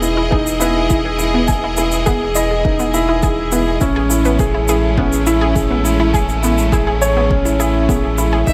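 Light reverb and a small room ambience give this short cut from a longer piano and strings electronica piece a modest sense of space, its mood hopeful and luminous at 103 BPM in a straight 4/4. A dark, woody upright piano sits up front with a long sustain and delay, playing a riff over chords that move from Emaj7 to Amaj7 at 3.8 seconds. Beneath it a round sine sub bass holds the low end, while a detuned sawtooth analog pluck runs arpeggios through chorus and delay, and a bright, biting studio string section sustains lush bowed chords from a distance, the sub bass, pluck and strings all breathing with sidechain pumping. An overdriven shaker runs from the start, and a deep, layered electronic kick drum, also overdriven and re-recorded in a large room, joins at 0.3 seconds. At 8.5 seconds a single violin with a reedy, gut-string period tone sounds one bowed note, E5, as the passage closes.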